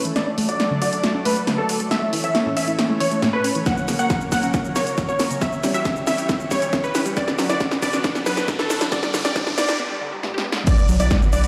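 A bright, airy supersaw stab carries a soaring, bittersweet uplifting trance melody in B minor at 137 BPM, filtered and pumping with tape echo, while a clear, very quiet grand piano adds a second line and a thick, warbling vintage pad holds chorused chords under a detuned pluck arpeggio. This build-up cut from a longer piece runs on an up-front, overdriven analog drum machine with punchy snare, hats and shaker, which rolls through fills. An overdriven electronic kick joins at 3.7 s, a background riser and noise sweep rise from 6.9 s into a short break, and a gritty, saturated synth bass lands on B1 at 10.9 s, all in a lush hall and stone-room ambience.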